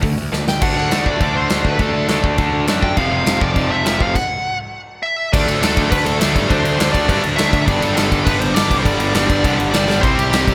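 A dark, smooth lead guitar with overdrive and digital delay carries the melody from 0.5 seconds over a punchy, up-front rock drum kit in a natural big room, in this rebellious, energetic punk rock excerpt. Beneath it, two bright picked guitars, one overdriven and compressed and one tight and distorted, churn out riffs in the background alongside a growly, fuzzed electric bass, while a very quiet, double-tracked crunchy guitar joins at 3.0 seconds. The band drops into a stop from 4.2 to 5.3 seconds before driving into a new section, all with little reverb.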